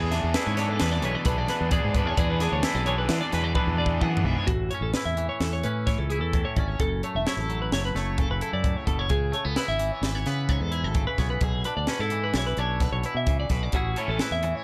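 A dark, dry production frames this intricate, wistful slice of math rock and midwest emo in A major, moving at 130 BPM in a straight 5/4. A twangy, bright guitar comps under a chorus-drenched clean guitar picking high arpeggios, while a growly, up-front fingered bass and a crisp fusion kit with a high-tuned snare and punchy kick drive the pulse; an overdriven, double-tracked stack guitar with spring reverb carries the riff through a drum fill that closes at 4.5 seconds, then returns at 13.7 seconds. The harmony moves through Amaj7, F#m7, C#m7 and E7/B before landing back on Amaj7.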